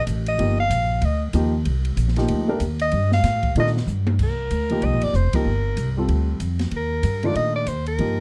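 Swinging in 4/4, this hypnotic, searching modal jazz fragment opens with an up-front soprano saxophone solo coloured by subtone and vibrato, over woody pizzicato upright bass with steel strings and an open acoustic kit with a boomy kick, medium-tuned snare, ride, hi-hat, crash and toms, while a worn baby grand piano accompanies on Cm9 harmony, voiced rootless at the outset; a drum fill at 3.9 s leads into the next section at 4.2 s, the band hits an accent at 5.3 s, and the production stays dark, dry and warm.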